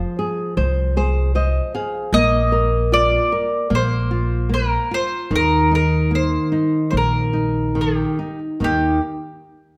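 This nostalgic, tender fado-style ballad in Eb major opens with mandolin, nylon-string guitar and upright bass sounding together, all three placed up front. The tempo sits around 75 BPM in 4/4, but the feel is rubato, and the instruments are tuned to A4 = 442 Hz. The picked mandolin carries the melody in a round, double-string voice, while the dark, fingerpicked classical guitar accompanies and adds a brief fill from 0.6 to 2.1 seconds. Beneath them, the pizzicato upright bass gives a woody, steel-string low end. The harmony moves from Fm to Bbsus4 and settles on Eb5 near 5.3 seconds, with a moderate recital-hall reverb adding space to this short excerpt of a longer piece.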